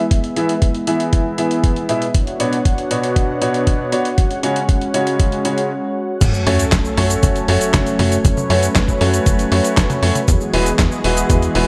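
A gritty, tape-warm sheen colors this bittersweet, danceable italo disco excerpt, moving at a straight 118 BPM in 4/4 and set in F# minor. A smooth, detuned sawtooth pad with soft attack and chorus holds sustained chords from the start, its sampler grit roughening the edges while a filter sweep runs over it through the opening 6.2 seconds. A thumpy, up-front electronic kick and a compressed soul-style kit of snare, hi-hat, handclaps, cabasa, toms and crash cymbal drive the groove in studio reverb, while polished grand piano stabs with short sustain ring through tape echo. After a brief break, an impact and a background sub drop arrive at 6.2 seconds along with a punchy sequencer bass, its sawtooth and square tones plucked through a filter and thickened by tube saturation. The chords move from E through Bmadd9 and C#sus4 before settling on F#m and closing on Eadd9.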